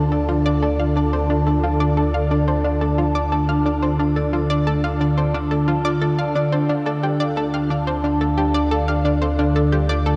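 A swirling, detuned sawtooth pad leads the sound with sustained D minor chords, its phaser and chorus giving a mellow, evolving wash that sits up front in this brief 10.2-second cut from a longer piece of ambient, sequencer-driven space music. Beneath it, a round analog bass holds a deep D at the bottom, built from square, sine and triangle waves with a wave-folded edge. A vibraphone struck with medium hard mallets spins arpeggios through a low-pass filter, its metallic ringing tone darkened and smoothed, with motor vibrato, delay and shimmer reverb trailing each note. An analog pluck adds a bright, fast-attack riff with a sub octave, its short decay carried by chorus, delay and shimmer reverb. The tempo sits at 89 BPM in a straight 4/4, and a lush hall reverb and the grain of cassette tape lend the whole a mysterious, cosmic atmosphere.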